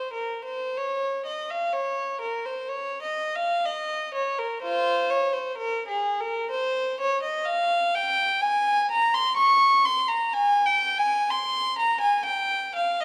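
In a slow triple metre at 63 BPM, the line moves with a free, rubato feel, grave yet flowing in this 13-second fragment cut from a longer piece. It is a baroque-style suite movement for a single unaccompanied violin, bowed by one player in period style and tuned to A4 = 436 Hz. The violin sits up front with a gut-string tone, reedy and lightly touched with vibrato, ranging from F4 up to Db6. The music begins in F minor and turns toward Ab major at 7.5 seconds, warming the sombre opening. A moderate recital-hall reverb, with a 1.6-second decay, lends the solo line a natural sense of space.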